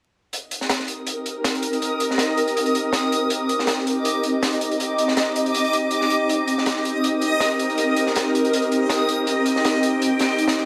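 At 161 BPM in 4/4, with a light 54% swing on the 16ths, this drum and bass and jungle excerpt in C minor opens on a crunchy breakbeat kit of hi-hat and high-tuned snare at 0.3 seconds. The kit sounds acoustic and saturated, as if caught in a small room, with a dark, rolled-off top and high-pass filtering on the hats, snare and room, and it sits up front in the mix. At 0.8 seconds an ethereal, airy pad arrives, holding a sustained Cm7 chord between C4 and Eb5 with a slow attack, detuned unison sawtooth and triangle tones, wave-folding, ensemble chorus and the grit of a vintage 12-bit sampler. A reversed, swelling texture joins at 1.8 seconds higher up, from Eb5 to Eb6, bright and dreamy with a granular, detuned character and a soft attack. A moderate plate reverb and a bed of vinyl crackle give the whole recording a nostalgic, raw feel.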